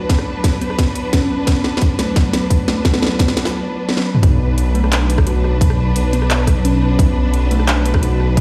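Heard through a big sound system in a bare room with a large studio reverb, this dark, cinematic half-time drum and bass cut in B minor at 174 BPM opens on lush, distant bowed strings holding sustained chords and a woody, hollow kalimba plucking arpeggios in the background, both carrying a gritty vintage 12-bit sampler texture, with sidechain pumping on the strings and digital delay on the kalimba. An overdriven, up-front electronic kit with a tight layered kick, cracking snare, bright hats, handclaps, rim clicks and toms drives a build-up full of fills, pausing for a short break at 3.5 seconds. At 4.2 seconds the drop lands with a deep, rumbling detuned saw bass, tube-saturated and beating low on B1, beneath the continuing strings, kalimba and drums.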